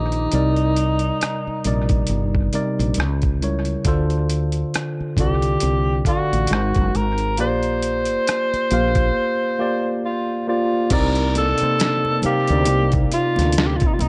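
A slow 68 BPM groove in 4/4 swings its sixteenths loosely, driven by a gritty, pitched-down boom bap drum kit with a thumpy kick, medium-tuned snare, rim clicks, hi-hat and crash, all compressed and sitting up front. This is a sultry, introspective stretch of neo-soul R&B in C dorian, cut from a longer piece. A growly, hollow-bodied fretless bass anchors the low end. A worn, slightly out-of-tune tine electric piano comps through chords moving from Cm7 through Dm7, Ab9 and Bb69. Over this, a breathy tenor saxophone carries the melody in an intimate, whispered subtone, with soft attacks, vibrato and scooped notes, its vintage tone trailed by analog delay in a dry but echo-heavy mix. At 10.9 seconds the harmony settles on Cm9 as a very quiet, lightly overdriven tonewheel organ adds sustained chords with key click and slow rotary, and bright, high-tuned congas join faintly at 11.4 seconds.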